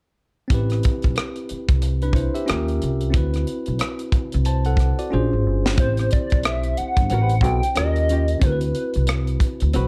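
R&B and neo-soul at 91 BPM with a late-night, soulful mood, swung 16ths in A dorian, built on a bell-like tine electric piano, a woody pizzicato upright bass and a tight funk drum kit with a high-tuned snare, where a drum fill at 5.1 seconds leads into a hollow, detuned square lead with chorus and vibrato from 5.8 seconds, joined at 7.1 seconds by a clean, compressed hollow-body jazz guitar, the whole cut from a longer piece and set in light reverb with a dark production.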